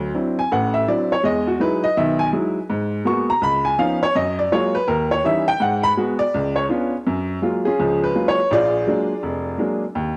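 Swinging and playful, this brief solo jazz piece moves at a brisk 165 BPM in 4/4, its eighth notes carrying a 64% swing in F# major. A single upright piano carries everything from 0.0 to 10.2 seconds, ranging from E#1 in the deep bass up to C#6, with a clear, woody and slightly boxy tone that sits up front in the mix. The piano passes through cassette tape, and a moderate spring reverb with a two-second tail surrounds it, giving the whole a homespun, taped character. The harmony is rich with extended chords, opening on D9 and moving through Emaj9, G#m9 and C#9 before landing on F#maj9, with altered dominants such as D#7b9 and C#7b9 adding spice. After 7.0 seconds a new section returns to F#maj9 and closes on A#7b13, and the recording ends there as a cut from a longer performance.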